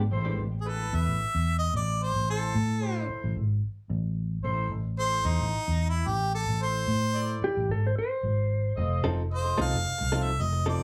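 A soulful, smoky blues cut from a longer piece, moving at 111 BPM in 4/4 with a swung sixteenth-note feel in A harmonic minor, resting on Am before shifting to F7 at 8.8 seconds. A foam-muted, fingered electric bass sits up front throughout, dark, round and punchy. A bright, close-miked harmonica carries the solo melody from 0.6 seconds, jazz-styled with light vibrato, soft attacks and scooped notes. Behind it, a mellow horn section holds loose sustained chords with a smooth top, while a direct-recorded clean electric guitar adds compressed, picked stabs with tape echo, returning at 9.0 seconds. A dark, compressed lap steel slides in with a second line from 7.4 to 9.2 seconds, all set in a light, small-room reverb.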